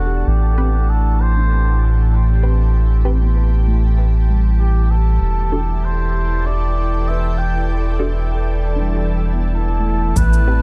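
A meditative, spacious ambient dub excerpt opens with a soft, veiled cup-muted trumpet carrying a distant melody through dub echo. Beneath it, a pure, organ-like pad holds sustained chords from Am9 to Em11, its slow attack and long release softened by ensemble chorus and built-in reverb. A round, up-front sub bass anchors the low end, while a handpan rings out arpeggios in the background, also trailed by dub echo. From 0.6 seconds a muted, detuned chord stab adds decaying, filtered hits coloured by phaser and echo. Only at 10.2 seconds does percussion arrive, as a deep, tape-warm electronic kick and a low-pass-filtered cabasa sound briefly from a large room just before the cut.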